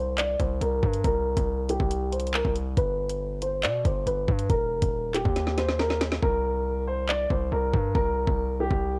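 A dark, mellow concert grand piano opens the track alongside a distorted 808-style bass. The piano carries a boxy, long-sustaining melody through a low-pass filter that sweeps across most of the section, while the heavy, saturated bass adds aggressive, decaying low end with a noisy edge. At 0.2 seconds an electronic drill drum kit enters with a knocking kick, a woody snare, bright hi-hats and handclaps, all overdriven and given a worn cassette-tape character. The tense, ominous drill groove moves in a half-time feel, and a drum fill arrives at 5.4 seconds. At 6.2 seconds the hi-hats drop out for the rest of this short cut from a longer piece, and the up-front piano, bass and drums sit in a digital ambience with the gritty feel of a home cassette recording.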